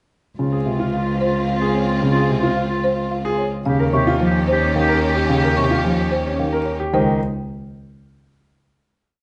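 The recording sits in a large studio with a moderate reverb and a gently muted top end, giving this short, complete piece of minimalist pattern music a hypnotic, luminous glow. In a steady, straight triple metre, a dark, mellow concert grand repeats a short low cell while a second, clear grand piano circles through arpeggios above it, its action noise audible at close range. A smooth cello holds long bowed bass notes, and a rich violin section adds expressive, vibrato-laden chords in swelling held notes. A bright clarinet carries a second line of pulsing notes that swell and fade, while a woody folk marimba with medium mallets plays the melody as a rustic repeated cell from the background, entering at 0.9 seconds. At 3.9 seconds a delicate, bell-like celesta, slightly out of tune, joins with gentle arpeggios, and the piece comes to rest on a final chord from 6.9 seconds.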